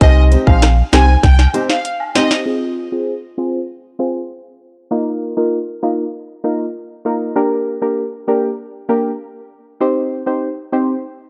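A tough, sultry dancehall groove in F dorian at 98 BPM opens with nearly every part entering together, the flamenco guitar joining at 0.3 s. A tight, electronic drum kit with a sharp snare, metallic hats and vintage 12-bit sampler grit sits up front beside a round sine sub bass. Alongside them, a deep, mellow chord stab built from triangle, sawtooth and sine tones is shaped by chorus and a low-pass filter. Above, a rich, distant violin section floats on soft, bowed sul tasto notes through an analog delay, while a flamenco guitar adds thumb-plucked arpeggios with fresh strings and audible finger squeak, and a woodblock and cabasa sit quietly in the background. After a short drum fill, the other parts have all fallen away by 2.5 s, leaving the chord stab alone under a filter sweep as it moves through Fm, Bbsus4, Gm and back to Cm until it ends at 10.9 s. The dry, gritty small-room sound carries a cassette-tape character, and the recording is cut from a longer piece.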